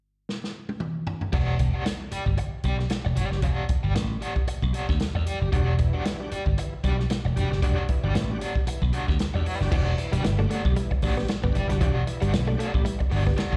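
A driving, sly funk passage opens with a fill on a vintage drum kit, with its dark cymbals, punchy kick and rolled-off top, before a bright, up-front slap bass and a crunchy overdriven guitar with tremolo and slapback echo settle onto an Em9 groove at 1.3 seconds, loosened by a light sixteenth-note swing. A shouting tonewheel organ with key click, chorus vibrato and fast rotary speaker adds stabs from 5.5 seconds, and a compressed, direct-recorded clean electric guitar joins with a riff at 9.7 seconds. The sound is that of a live gig heard through the venue's PA, cut from a longer piece.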